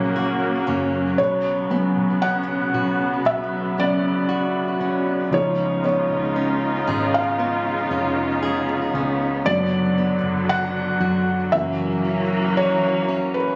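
A longing, emotional pop ballad in B minor at a slow 58 BPM, this excerpt features a soft, felt-muted upright piano with audible action noise carrying the lead up front, veiled con sordino strings holding sustained chords with vibrato, a woody fingerpicked steel-string acoustic guitar weaving arpeggios through a delay, and a round, punchy foam-muted electric bass that drops out at 13.0 s, all set in a moderate plate reverb and captured on a phone in the room as the harmony moves from F# through Bsus2 and C#7 to Bm/F# and F#7.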